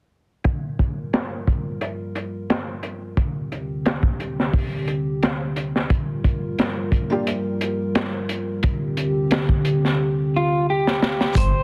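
A crunchy breakbeat kit drives this brooding, smoky trip hop piece from 0.4 seconds, its punchy kick, high-tuned snare and hi-hat gritty and rolled-off under low-pass filtering, with a drum fill near the close. Beneath it a dark analog pad sustains nasal, detuned chords with chorus and a filter sweep, moving between Gm7 and D7sus4, while a felt-muted upright piano adds a brief, boxy touch of harmonic tremolo and tape echo at 7.1 seconds. An electric slide guitar enters at 10.4 seconds with a slightly broken-up melody, and a detuned saw bass rumbles in with tube saturation just as the excerpt ends.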